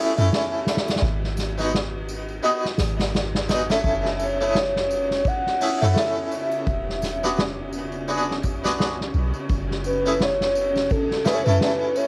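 Trip hop at 85 BPM in F# minor with a brooding, cinematic swing, where a brilliant, up-front harpsichord with tremolo and tape echo plucks its accompaniment over a round, deep 808-style bass with tube saturation, a roomy soft-mallet drum kit of hi-hat, kick, ride and snare with dark cymbals and cassette grit, and a bright tambourine and triangle in the background, before a vintage string machine with cellos, phaser and ensemble chorus and a pure, breathy sine lead with vibrato and chorus both enter at 4.2 seconds, all wrapped in the light small-room ambience of a home cassette recording cut from a longer piece.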